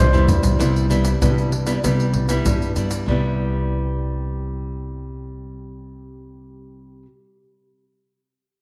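A straight 4/4 samba-and-choro groove at 97 BPM opens with a drum fill from a tight surdo, tube shaker and soft-handed pandeiro, which play until 3.2 s, while an up-front woody, thumpy pizzicato upright bass on gut strings and a small, warm fingerpicked nylon-string guitar starting on Cmaj7 sit in a moderate echo-chamber reverb, giving this festive, playful C major excerpt a move into a new section at 3.1 s.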